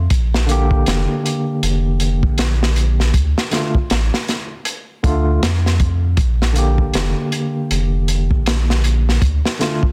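Trip hop at 79 BPM with a swung sixteenth-note feel, hypnotic and melancholic, cut from a longer piece as it circles between Bb and Dm. A deep, round sine sub bass sits up front from the start, joined at 0.1 seconds by a crunchy, gritty breakbeat kit of kick, snare and hi-hat with a saturated, rolled-off top. A barky, bright tine electric piano enters at 0.5 seconds, lightly overdriven through a combo amp with tremolo and tape echo, all in a small room and a dense, heavily limited master.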